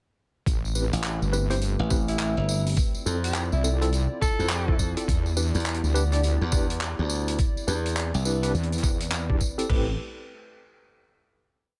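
Playful and swaggering, this glitch hop piece in A minor rides a swung 104 BPM groove in 4/4, tuned slightly below concert pitch. A thumpy, gritty, pitched-down sampler-style kit sets up a broken kick with toms and crash cymbal, while a natural studio-room drum kit adds handclaps, closed hi-hat and rim click, and a close, jingly tambourine fills in hand-played sixteenths. Two basses sit up front: a heavy, saturated wobble bass with chorus and shifting wobble speed, and a glassy, punchy electric slap bass playing chopped phrases until 8.5 seconds. A worn, slightly out-of-tune tine electric piano plays a rootless rhythmic chord riff through a combo amp with tremolo, digital delay and sidechain pumping, over a deep, moody analog pad in the background that carries chorus and its own pumping through Am9, Dm9, Em7 and Cmaj9. From 2.1 to 4.8 seconds a distant, roomy tenor saxophone with vibrato enters with short solo phrases, roughened by vintage 12-bit sampler grit and digital delay. 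The mix is dry with a softened top end, and the drop gives way to a closing Am9 chord at 9.7 seconds.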